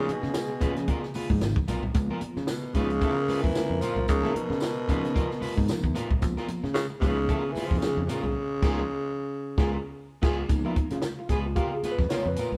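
Funky and gritty, this excerpt of mid-tempo swung funk at 112 BPM in Db mixolydian features a growling, raspy tenor saxophone up front carrying the melody over a dark trombone second line, a slightly broken-up picked electric guitar, mellow tine electric piano stabs, round overdriven fingered bass, a dry compact cocktail kit with a high-tuned snare, soft low-tuned congas and a jingly tambourine, all playing live in a stone room, with a band accent from 8.4 seconds, a silent gap at 10.0 seconds, and the electric piano soloing from 10.5 seconds.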